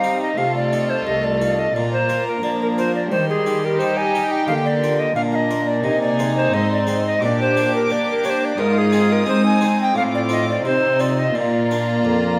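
A wet, roomy stage reverb surrounds this brilliant, festive baroque-style concerto movement at 88 BPM in 4/4, where an airy, chiffy tenor recorder carries the melody up front beneath a high, gut-strung violin section that also plays a melodic line, a second violin line, a dark, distant viola section, a bright Italian-style harpsichord, and a close, reedy cello section anchoring the bass through chords moving from F7/C to Bb across this 12.4-second cut from a longer piece.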